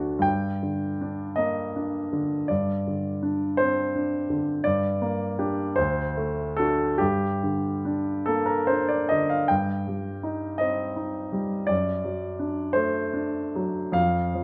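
A warm, polished baby grand piano plays alone from the start in this yearning, melancholic romantic nocturne in G minor, moving in a rubato 12/8 at 47-58 BPM by the dotted quarter, spanning D2 to G5 and tuned to A4 = 441 Hz, as Gm, Gsus4, D7 and Cm/G give way to D/F# at 11.7 seconds, with the present, up-front tone caught by close, detailed microphones and framed by a moderate recital hall reverb, in a passage cut from a longer piece.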